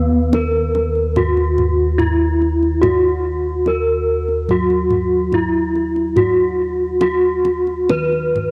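A dark, smooth bronze metallophone struck with horn mallets rings out a shimmering, paired-tuned melody over round, beating bossed gongs that sit close-miked, dry and full with a touch of transformer saturation, while a deep kendang played with hard hands joins at 0.3 seconds, giving this hypnotic fragment of Javanese gamelan a lightly reverberant small-room feel, with analog delay trailing the metallophone, on a cassette home recording.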